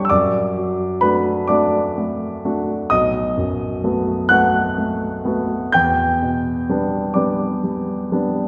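A polished grand piano, present and up front, carries this short, tender fragment of a romantic nocturne in D major, unfolding in a slow, rubato 12/8 at 42 dotted-quarter beats per minute across a range from B1 to G6. The harmony drifts from D/F# to B7 at 2.9 s and on to Em7 at 5.7 s, lending the phrase a nostalgic cast. A lush concert-hall reverb with a 2.0-second decay surrounds the instrument, the top end is gently rolled off, and a faint mains hum sits beneath the sound.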